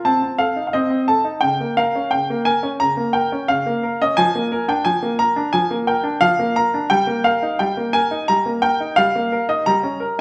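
A classical-period piano sonatina, this short excerpt cut from a longer piece is cheerful and graceful, moving at 87 BPM in 4/4 with a flexible, rubato feel. A clear baby grand piano plays alone from 0.0 to 10.2 s, ranging from Db3 to Bb5, its natural tone up front with short sustain. The harmony opens on Adim/C and Bbm/Db before settling into Eb major at 4.2 s, passing through Bb/F and Eb/G and closing on a rootless Eb7/G at 9.7 s. A moderate recital hall reverb surrounds the instrument, lending its clear tone a gentle sense of space. The tuning sits slightly high, at A4 = 441 Hz.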